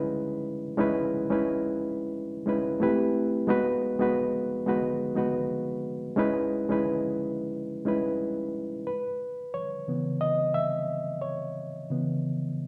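Soul in a silky, cinematic mood, this short piece cut from a longer one features a lone reed electric piano, reedy and worn, slightly out of tune and lightly overdriven through its built-in speakers, sitting up front. Its chords move from C#m9 through Am7 and G#m7 before returning to C#m9 and settling on C#m7, with a gentle sixteenth-note swing. A large, wet studio reverb gives the sense of a band playing live in one room, and the piano carries a solo from 8.9 s to the close at 12.7 s.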